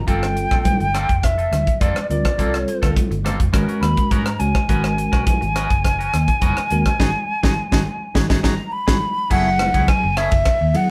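A hollow, close-miked concert flute carries the melody with vibrato from the very start over a dark, round, foam-muted fingered bass, opening this slick, funky electric jazz fusion excerpt cut from a longer piece. Bell-like tine electric piano chords moving from Gm11 to G#m11, clean picked stabs from a twangy guitar, an up-front drum kit with a high-tuned snare and tight kick, and bright congas set back in a large room fill out the band, heard playing live in one room with moderate studio reverb. A band accent arrives at 7.0 seconds, a drum fill follows at 8.2 seconds, and the harmony shifts to F#m9 at 9.3 seconds.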